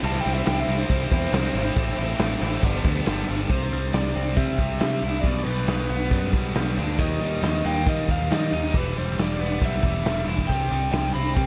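A dark, lightly reverberant production frames this jangly, wistful indie rock excerpt at 137 BPM in straight 4/4, where an up-front garage drum kit with a punchy kick and rolled-off top rings in a bright stone room beside a growly picked electric bass and a biting, double-tracked overdriven guitar riff, while a compressed overdriven lead guitar with tape echo carries the high melody, standing out as a solo until 3.5 seconds before the chords shift from C through G/B to Eb and Em.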